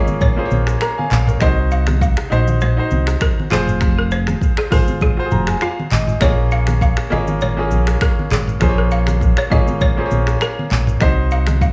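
A digital studio ambience frames this hypnotic, smooth afrobeats excerpt in Bb minor at 100 BPM, with a gently swung 16th feel and chords moving through Bbm7, Cdim and Fm. An electronic afro-pop kit with a deep kick, metallic hats, snaps, claps, rim clicks, shaker and toms sits up front beside a round, punchy fingered electric bass, while a brilliant concert grand piano with short sustain comps throughout and plays a fill from 5.0 to 6.2 seconds. A woody, buzzing balafon riff struck with hard rubber mallets carries analog delay, and very quiet, damped, low-tuned congas with a vintage, band-limited tone fill in beneath.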